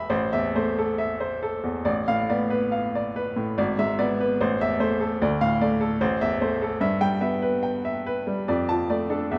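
A clear, woody upright piano with a vintage, up-front presence and short sustain carries this brooding, passionate romantic character piece in A minor, moving in a rubato 2/4 at 65-76 BPM through shifting harmonies set in a moderate scoring-stage reverb, in a brief passage cut from a longer work.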